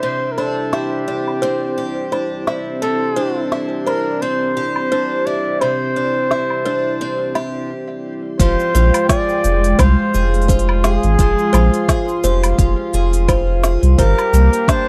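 A relaxed 86 BPM groove in 4/4 with a gentle swing on the sixteenths opens this warm, pastoral folktronica excerpt, carried by an organic electronic kit of cabasa, smooth hi-hat, woody snare and woodblock, all softened by low-pass filtering and a tape-warm, small-room character. Up front, a breathy, whispered flugelhorn sings the melody between G4 and D5 with light vibrato and tape echo, while a bright, shimmering twelve-string acoustic guitar picks octave-doubled arpeggios, also treated with tape echo. A dark, detuned analog pad with chorus sustains the chords beneath, and a mellow, woody kalimba plucks a soft second line in the background from 0.4 seconds, echoed as well. A very quiet reversed, granular texture swells dreamily on C5 until 7.7 seconds. At 8.4 seconds the harmony shifts from Cadd9 to Fmadd9 as a round, sine-like sub bass and a deep electronic kick enter, grounding the close, dry, 1970s-style studio sound before the music reaches Gm7 at the end.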